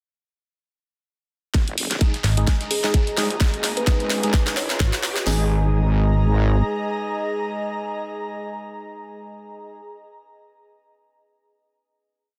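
This short, aggressive bass house piece runs at 129 BPM in 4/4 with a swung sixteenth feel, built on a G#5 chord and opening at 1.5 seconds with a drum-fill build-up. Two layered garage kits drive it up front: one supplies a tight four-on-the-floor kick and cracking snare with open hats, the other adds programmed hats and a backbeat, while a very quiet, overdriven sampler-style soul kit slips a looped, edited breakbeat underneath. A heavy, saturated, detuned wobble bass pumps against the kick with modulated phrases of changing wobble speed, and a metallic FM bass cuts in with chopped phrases that answer it. Above them, hollow organ-like stabs play syncopated chords in one parallel shape through chorus, tape grit and delay, a breathy, airy pad shifts slowly through its chords, and a woody, dark kalimba rings out short answering phrases in the background. A distant riser adds its transition effect up to 5.3 seconds, where the drums fall away. 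The wobble bass lingers until 6.6 seconds, and the pad and organ stabs hold the final chord before ringing out until 9.8 seconds, all pressed into a dense, heavily limited master with light reverb.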